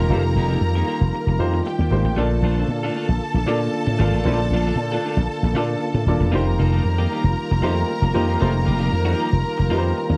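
Disco in Bb major at 115 BPM, joyful and glamorous, this short cut from a longer piece puts a punchy, growly slap bass with an envelope filter up front, while a dark, clean semi-hollow electric guitar and an intimate baby grand piano with audible action noise accompany, a lightly overdriven tonewheel organ with chorus vibrato and a slow rotary speaker sustains chords in the background, and a lush, distant string section carries a second line over F9sus4 and Bbmaj7 harmony in a dry, close 1970s-style studio sound.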